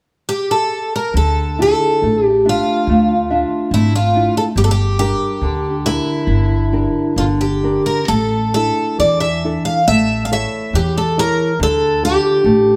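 A slow, rubato 2/4 pulse around 65-72 BPM carries this mournful, longing fado-style ballad in D harmonic minor, cut from a longer piece. A picked twelve-string acoustic guitar, shimmering and octave-doubled with fresh strings and audible finger squeak, sits up front carrying the melody alone from 0.3 seconds. At 1.1 seconds a small, thumb-plucked nylon-string guitar and a woody pizzicato upright bass join beneath it, moving through Dmadd9, Gm, Asus4 and A before settling on Dm, all heard as a band playing live in one room with moderate large-studio reverb.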